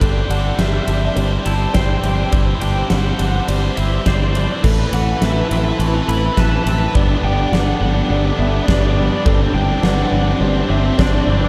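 A straight 4/4 pulse at 104 BPM drives this brooding, cathartic post-rock build-up, cut from a longer piece. A huge arena drum kit with a punchy kick, fat snare and bright crash and ride cymbals sits under a growling, overdriven fingered bass that is pushed up front. A lead guitar through a small cranked amp carries the melody from 0.3 seconds, its overdriven tone touched with subtle chorus and analog delay. A bright, picked distorted guitar plays a riff, joined at 4.6 seconds by a sludgier overdriven riff guitar further back. Behind them, a clean, twangy guitar with ensemble chorus and delay and a soft, felt-muted upright piano both play arpeggios, while a floating, sul tasto string section holds sustained chords over a progression moving from Cadd9/G through Amadd9 and G. The whole mix is dreamy and soaked in lush hall reverb.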